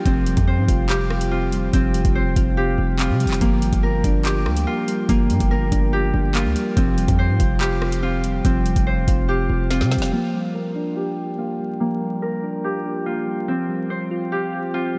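A half-time 143 BPM drill beat in G minor, with a knocking kick, woody snare, metallic hats, handclaps and rim clicks over a heavy, distorted 808-style bass up front, drives this ominous, cold hip hop passage until both drop out at 10.1 s after a drum fill, leaving a bright, ringing Celtic harp arpeggio with analog delay, round chorused electric-piano-like synth keys and glassy, ethereal glass harmonica chords in the background to ride a filter sweep over Fsus2 and Gm7 amid vinyl crackle and light reverb.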